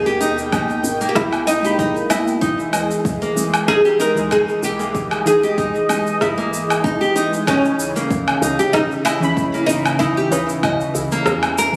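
A plucked, fretless oud carries the melody, its doubled strings and woody tone trailing tape echo across this hypnotic, warm organic downtempo excerpt at 95 BPM with a light sixteenth-note swing. Beside it, a bright, fingerpicked nylon-string guitar plays classical-style arpeggios up front with audible finger squeak, while a smooth, detuned sawtooth pad holds sustained chords with chorus and sidechain pumping. A deep, warbling chord stab with a vintage cassette character plays at the start and returns at 9.2 seconds, and a soft, round FM bass sits dark and low in the background. The rhythm comes from an overdriven electronic kick and a layered kit of electronic shaker, woodblock and rim click, re-recorded in a large room, with a deep udu faint beneath them; the kick drops out at 11.3 seconds. The harmony moves from Emaj7 to Dbm7 at 7.5 seconds, all set in a lush hall reverb with the compressed, roomy feel of a phone recording.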